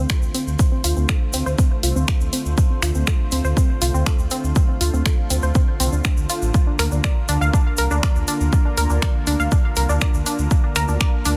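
Dark and cinematic, this melodic techno excerpt moves at 121 BPM in D minor, with a punchy, overdriven electronic kick and a house kit of finger snaps and bright hi-hats driving it, while an egg shaker adds a grainy edge in the background. A menacing detuned saw bass sits up front, a lush, thick pad holds sustained chords, and a round analog pluck spins arpeggios through a filter sweep, with delay and chorus on the pluck and sidechain pumping on all three synths. The harmony shifts from Dm7 to Bb at 6.5 seconds, all within a digital ambience and a dense, heavily limited modern master.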